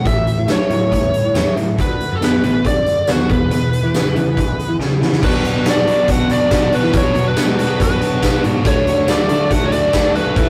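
A biting, overdriven lead guitar carries the melody up front in this driving, brooding classic rock excerpt at 140 BPM in B dorian, backed by a huge arena drum kit with a punchy kick, medium-tuned snare, hi-hat, crash and tambourine that plays a fill just before the shift at 5.2 seconds. Two overdriven electric guitars, one crunchy and one bright, play riffs in the background alongside a growly picked electric bass, while a shimmering, octave-doubled fingerpicked twelve-string acoustic guitar sits very quiet underneath. A dark, woody upright piano joins very quietly at 5.2 seconds as the chords move from A, D and E to B minor and D, all captured in a rough rehearsal-room sound with warm saturation and a moderate booth ambience.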